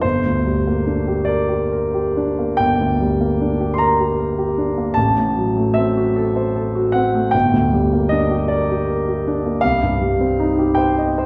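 A deep-bassed, open and up-front concert grand piano plays alone through this dreamy, nostalgic 11.3-second passage from a longer romantic nocturne, unfolding in G minor at a rubato 44-54 BPM in 12/8. It spans G1 to C6 over Gm, F#dim/A, Gm and Cm harmonies, tuned to A4 = 438 Hz and heard from further back in a wet recital hall with a 1.5-second reverb.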